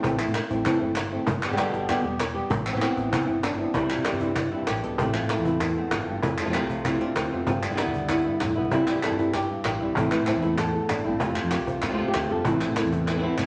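Bathed in wet, large-studio reverb and dusted with vinyl crackle, this mournful, passionate flamenco excerpt in A minor moves at 193 BPM in a straight 4/4, its top end rolled off above 10.4 kHz. A dark, fingerpicked flamenco guitar carries the melody up front with audible finger squeak, over a round, punchy fretless electric bass, a snappy cajon struck with hard hands, and crisp, vintage-toned palmas hand claps. At 3.7 s a second, boxy fingerpicked guitar enters with stabs over chords that cycle through Am, C, F and G, and a drum fill at 13.1 s closes the cut.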